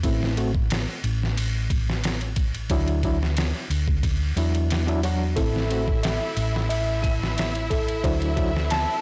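An overdriven, barky reed electric piano provides the accompaniment in this brooding, cinematic trip hop piece, its fast tremolo, 12-bit sampler grit, tape echo and filter sweep colouring a chord cycle between Am and Dadd9. Beneath it sit a dark, round hollow-body bass with transformer saturation and a compressed, pitched-down sampler-style kit with a thumpy kick, a medium-tuned snare and ride cymbal, captured in a blown-out, overdriven recording with little reverb. At 5.4 seconds a rich, smooth violin section enters with sustained chords, alongside a delicate, slightly out-of-tune music box playing arpeggios through tape echo.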